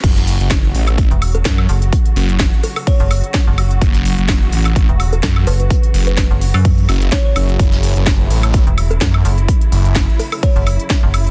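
Gritty and swaggering, this bass house drop is cut from a longer piece and moves in 4/4 with a light swing on the sixteenths. Two basses sit up front: a thick, swirling detuned saw bass with phaser, tube saturation and sidechain pumping that plays until 10.1 seconds, and a metallic, digital FM bass with overdrive and pumping that joins at 1.1 seconds. A punchy electronic kick anchors the groove alongside a layered house kit of cracking snare, crisp hi-hats, cabasa, crash cymbal and woodblock, while a very quiet, airy jazz brush kit adds hi-hat and snare played with brushes. Behind them, a distant, lush string section holds sustained chords through a low-pass filter and sidechain pumping. A woody, hollow kalimba enters at 1.3 seconds with short thumb-plucked notes and tape echo, set in the background. The dense, heavily limited master carries a small room ambience.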